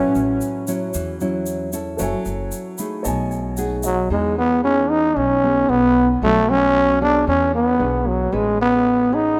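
This rough home demo mix sits in a lush, wet hall reverb with a long 3.0-second decay, giving this short cut from a longer bossa nova a spacious glow. At 114 BPM in E major with a straight 4/4 feel, the mood is sophisticated and romantic, moving through chords like A6, F#m7 and B13 before arriving on Emaj7 and closing on Amaj9. A close-miked growling trombone carries the melody up front, its raspy, gritty jazz tone shaped by vibrato and scooped notes, returning at 3.9 seconds after a brief opening phrase. Beneath it, a classical nylon-string guitar is thumb-plucked throughout, while a woody, thumpy pizzicato upright bass holds down the low end. A warm grand piano adds accompaniment and a fill starting at 2.5 seconds, and a grainy, bright egg shaker adds texture until both stop at 4.1 seconds.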